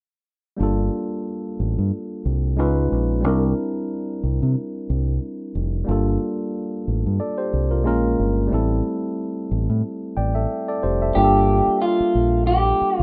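This smooth, introspective neo-soul and R&B piece moves at 91 BPM in 4/4 with a light swing on the sixteenths, set in G dorian and tuned slightly low at A4 = 439 Hz. A barky tine electric piano carries the accompaniment from 0.6 seconds, its clean combo-amp tone sitting up front over chords that drift from Gm9 through C#9, C9, Bbm7 and Am7 before returning to Gm9. Beneath it, a deep dub fingered electric bass holds the low end, dark and round with a direct, amped presence. At 11.2 seconds an electric guitar through a small old amp enters with a short melody, twangy and slightly broken-up, compressed and bathed in spring reverb. The digital ambience and rough home-demo mix give this fragment of a longer piece an intimate, unpolished feel.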